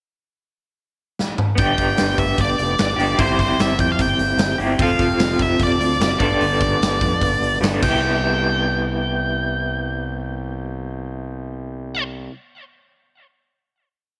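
A dark, distorted octave-fuzz lead guitar with tape echo sings a free-form melody over ringing, slightly broken-up lo-fi chords from a tremolo guitar through a small old amp and a driving eighth-note overdriven bass in this short, jangly, carefree indie rock piece, where a big-room acoustic kit with bright cymbals and a tight kick enters on a fill at 1.2 seconds, powers the pre-chorus and stops at 7.9 seconds before the band lands on a final hit at 8.0 seconds.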